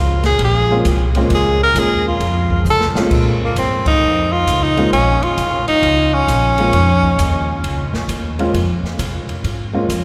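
Small-group swing and bop jazz with a swinging, moody feel, where a bright tenor saxophone with vibrato solos up front over a woody, thumpy pizzicato upright bass, an airy, polished drum kit with dark cymbals and a boomy kick that plays a fill at 2.7 seconds, and a clear, intimate grand piano with audible action noise entering at 0.7 seconds, the group set in a long, church-like cathedral reverb and hitting a band accent at 3.8 seconds in this fragment cut from a longer piece.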